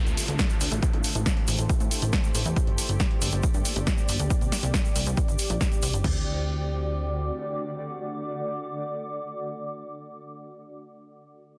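A straight uplifting trance groove drives this euphoric yet bittersweet excerpt: a tape-warm analog drum machine puts its kick up front from 0.4 s, with crash cymbal and toms, while a second analog machine supplies hi-hat and snare and a grainy, bright egg shaker sits in the background. Underneath, a plucky analog bass blends sawtooth, square and sine tones with wave-folding and a fast-decaying filter pluck, punchy and funky, given bite by tube saturation and pumping against the kick. A shimmering, ethereal pad holds dark, detuned unison chords with an octave-up granular sheen, chorus and its own reverb, also pumping in the sidechain. The harmony moves through Dm, Am7, Gm and Cadd9 before landing on a D chord as the drums and shaker stop around 6 s, leaving the bass briefly and then the pad sustaining alone to the cut at 9.8 s. A faint electronic downlifter opens the passage, and the whole mix is dense and heavily limited, set in light digital ambience.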